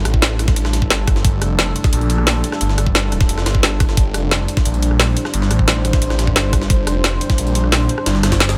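A dry, up-front mix opens this short cut from a longer dark, technical drum and bass track in G minor at 176 BPM, mechanical and aggressive in mood, resting on a single Gmadd9 chord throughout. A swirling, thick detuned saw bass with a phaser sits at the front alongside a knocking electronic kick and an overdriven drum kit with a woody snare, bright hats and rim clicks. Behind them, a gritty, pitched-up jungle sampler kit with a high-tuned snare sounds as if captured in a large room, while a deep, moody pad holds slow-attack sustained chords with chorus, reverb and sidechain pumping.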